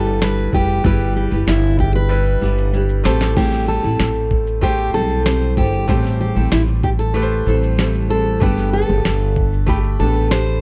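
Acoustic pop in A minor at 95 BPM in a straight 4/4, this short excerpt has a tender, reflective mood, moving from Em to Am7 at 3.1 seconds and on to Gadd9 at 8.4 seconds. A full-bodied, fingerpicked steel-string acoustic guitar carries the melody up front, while a double-tracked nylon-string guitar with old strings adds woody, classical fingerpicked accompaniment. A bright grand piano with a polished, short-sustain tone sits further back, and a growly pizzicato upright bass anchors the low end up close. A dusty soul sampler-style drum kit enters at 0.1 seconds with a thumpy kick, fat snare, shaker and crash cymbal, its gritty, compressed, tape-toned sound re-recorded in a large room, and a drum fill runs from 2.1 to 3.4 seconds. The overall sound is a dry, close 1970s-style studio recording with a small room reverb.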